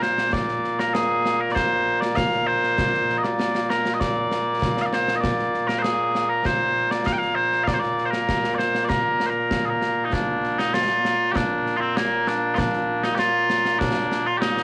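Mellow, sweet small bagpipes carry a continuous solo melody up front in this stirring, ceremonial passage of traditional Scottish pipe music, set in B-flat mixolydian at 98 BPM in a straight 4/4, with acoustic concert snare and bass drum and bright cymbals sitting further back in a live room, a new strain arriving at 10.1 seconds, and the whole cut from a longer piece with the soft grain of a home cassette recording in moderate studio ambience.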